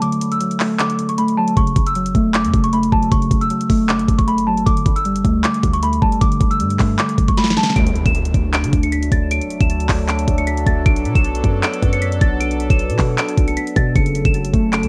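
A home cassette recording with a digital ambience frames this menacing, melancholic trap excerpt at 155 BPM in a half-time feel, where a worn, bell-like celesta, slightly out of tune and dark, carries the melody over muted, warbling felt-like synth keys. Up-front electronic drums with a knocking kick, sharp snare, bright hats and handclaps drive the groove, and a deep, boomy 808-style bass joins at 1.6 s after an opening break. At 7.8 s, following a drum fill, an electronic impact lands as the synth keys drop out and an evolving, wave-folded resonant pad with chorus and phaser takes over the chords, before the keys return at 14.0 s.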